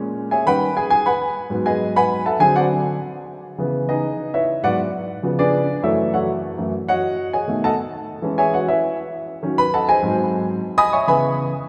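A long, wet church reverb of about 3.0 seconds surrounds this recording, made in a church or concert hall, giving the notes a lingering halo. It is a short cut from a longer jazz piece in C# minor, moving at a brisk 200 BPM in 4/4 with a straight feel and a driving, sophisticated mood. A solo upright piano carries the whole passage from 0.0 to 11.5 seconds, its woody, polished tone sitting up front and spanning from F#2 to D#6. The harmony is rich and restless, passing through an altered D#7, G#m7 and D7 before settling on C#m9 at 3.4 seconds. From there it runs through a minor ii-V into F#m7, then B13, E69, D#m7b5 and G#7, landing back on C#m9.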